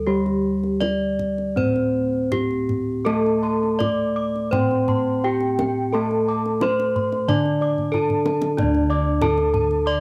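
This home cassette recording has a moderate room reverb around its sound, and it is cut from a longer, ceremonial and serene piece of Javanese gamelan in a straight four-beat metre. Up front, a bright bronze metallophone struck with a horn mallet carries the melody with a dry, close, ringing tone that has a tape color. A second metallophone, played with a wooden mallet, supports it lower down, and bossed gongs hold the bass with a round, beating resonance. The kendang adds deep, compressed, saturated drum strokes throughout. Around 3.0 seconds, a higher layer of arpeggios enters: a vintage, band-limited metallophone whose paired tuning gives shimmering beats, with plate reverb and analog delay, beside softer bossed gongs with plate reverb. A kendang fill at 7.8 seconds leads into a new section at 8.6 seconds, where the accompanying metallophone drops out.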